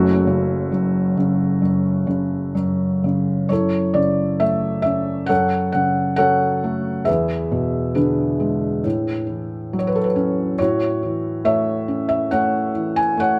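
Melancholic and dark, this lyrical classical solo piano excerpt unfolds in F# minor at a rubato 68 BPM in 4/4, with a felt-muted upright piano ranging from F#1 to G#5 alone for the full 13.4 seconds. Its soft, mellow, intimate tone sits up front, with audible action noise adding a vintage character to the smooth playing. Close, detailed microphones and light reverb frame a harmony that drifts from F#m through E7 and A6 before settling on F#m7/A at 10.6 seconds, as the fragment is cut from a longer piece.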